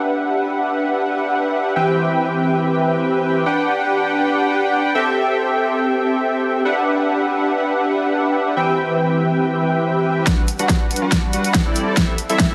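Bright and euphoric, this future bass cut in G major moves at 141 BPM with a half-time feel, led from the start by a fat, detuned sawtooth polysynth riff that sits up front, colored by analog chorus, sidechain pumping and dub echo over Em9, Cmaj7/E, Gmaj7 and Am7 chords. At 10.3 seconds a build-up arrives with a drum fill: an overdriven, punchy electronic kick joins a big-room dance kit with hi-hat and a huge snare, while a deep, boomy 808-style bass enters barely audible beneath. Light reverb surrounds the sound, and lossy compression artefacts are noticeable.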